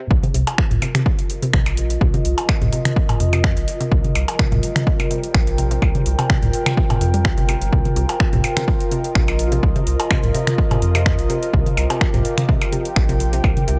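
Lightly reverberant and filtered, this cool, clinical minimal techno excerpt runs at 126 BPM in C minor with a gentle 16th-note swing, sitting on a Csus4 chord throughout its drop. An overdriven, punchy layered kick sits up front over a round, deep analog bass with tube saturation, while a booming analog drum machine adds finger snaps and metallic high-passed hats, and tape-toned electronic toms and percussion blips round out the kit. In the background, a hollow, bouncy square pluck riff with chorus and delay pumps to the sidechain alongside a bubbling, resonant stepped-filter texture, and from 0.5 seconds a warbling, nostalgic lo-fi pad drifts above.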